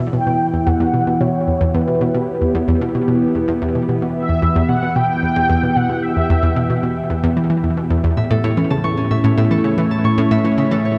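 Mysterious and hypnotic, this short cut from a longer piece of ambient, sequencer-driven space music moves at 112 BPM in a straight 4/4 in E dorian, with a bright, up-front analog pluck riff in the low register and a swirling, evolving phased pad sustaining chords from Em through to A at 8.2 seconds. A mellow, horn-like synth lead with vibrato and ensemble chorus sings a melody until 6.8 seconds, and at 8.2 seconds a fingerpicked concert harp enters with ringing acoustic arpeggios through analog delay. A huge, wet ambient reverb with a 7.8-second tail bathes the whole mix in deep space.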